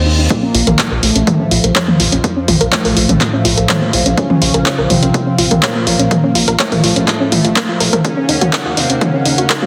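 Melodic techno with a driving, dramatic mood, this short excerpt builds throughout as a filter sweep moves across the soft, round, nasal pluck arpeggios, which carry chorus and tape echo over a deep, moody analog pad sitting in the background and a smooth, full-bodied supersaw melody with digital delay. Underneath, a gritty, aggressive driven synth bass with tube saturation pumps against the beat alongside the pad, supersaw and pluck, while an overdriven electronic kick sits back in the mix and a punchy analog drum machine with handclaps, hi-hats and toms stands up front, re-recorded in a large room. A reverse cymbal opens the piece before the drums enter at 0.3 s, the harmony shifts from Bbm to Ebm7 as a riser arrives at 8.0 s, and the whole is held in light reverb under a dense, heavily limited modern master.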